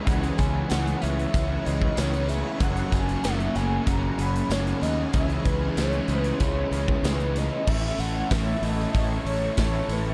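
A dark, warm small-room production frames this melancholic, dreamy shoegaze and dream pop excerpt in C# minor at 94 BPM, where a velvety, detuned synth lead with chorus and digital delay carries the melody over a lush string machine, a shimmering octave-doubled twelve-string acoustic playing arpeggios until 7.7 seconds, three overdriven guitar riffs (one crunchy, one dark with analog chorus, one raw and double-tracked), an up-front fuzz bass, a punchy big-room drum kit with bright cymbals and a distant jingly tambourine, moving from C#m7 and F#add9 to an A chord at 7.7 seconds.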